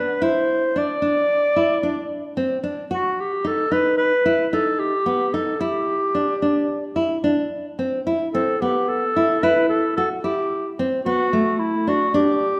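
Shimmering and hopeful, this short passage cut from a longer contemporary chamber piece moves in an uneven five-beat metre with a straight feel. A warm clarinet carries the solo melody up front, played in a jazz style with vibrato, a soft attack, scooped notes and a smooth top. Beneath it, a full-bodied nylon-string guitar, also up front, lays down fingerpicked arpeggios with a deep classical tone, the two parts sharing the opening at 0.0 seconds. The harmony moves from Cadd9 and B back to a rootless Cadd9, then shifts at 8.3 seconds into a second section that passes from Am9 to Gmaj9 before the clarinet closes at 12.6 seconds. A recital hall reverb bathes the sound, and lossy compression artefacts linger in the recording.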